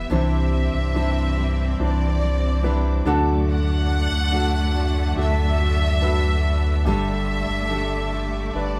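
A steady, straight 4/4 pulse at 71 BPM carries this hopeful, heartfelt pop passage, a brief 8.8-second piece cut from a longer work. All six parts play together throughout, moving through Cadd9, D and Gsus2. A bowed violin section carries the melody between D5 and F#5 with smooth, even vibrato and a close, lush ensemble tone, while a rich symphonic cello section sings a second line beneath it. A warm, open baby grand piano provides accompaniment, and a picked steel-string dreadnought guitar adds full-bodied arpeggios in the background. Farther back, a distant string section holds sustained chords with expressive portamento, and a deep sub bass with an added octave sits up front, its sine and triangle tone sustained under a fast attack. The band sounds as if playing live in one room, wrapped in a wet studio reverb.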